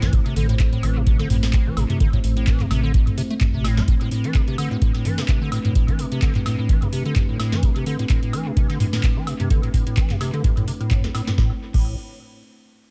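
Riding a 128 BPM pulse with a light 16th-note swing, this hypnotic, raw acid house cut in A minor sets a tape-warm, up-front electronic kick and a dry, booming analog drum machine of crisp snare, metallic hats, handclaps, toms, crash and woodblock against a squelchy, resonant acid bass riff with filter sweeps, overdrive and echo, a round, deep analog bass that drops out at 3.8 seconds and returns at 11.4, and a moody, slow-blooming pad of sustained chords pumping beneath it all in an echo-heavy mix.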